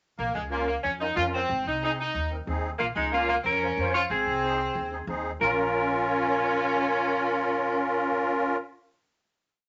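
A wet studio reverb and a dulled top end frame this short, fiery and passionate Latin piece in Bb minor at 184 BPM, which moves between Bb minor and Ab before settling on a final chord at 5.4 seconds. Up front, an edgy saxophone section with vibrato carries motif-based call phrases, while a pizzicato upright bass plays a woody, thumpy cumbia figure beneath a reedy, shimmering musette accordion that sounds close and dry as it plays full, rhythmic triad chords. From 2.8 seconds, a bright, clean, picked electric guitar adds a harmony line mostly in thirds, colored by a vibrato effect.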